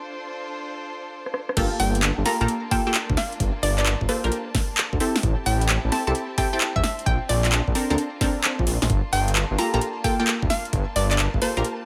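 Punchy, detuned sawtooth chord stabs with chorus, phaser and tape echo sit up front in this moody, bouncy two-step UK garage excerpt at 131 BPM in G dorian, where a lush, gritty violin section sustains chords in the background from 0.0 seconds. A swung garage kit of woody snare, metallic hats, claps and rim clicks enters at 1.3 seconds with a drum fill that sets up the drop at 1.6 seconds, as a rumbling detuned saw bass and a knocking overdriven kick arrive, followed at 1.8 seconds by a hollow square pluck melody, all over Gm9, Am7 and Bbmaj9 chords in a light reverb.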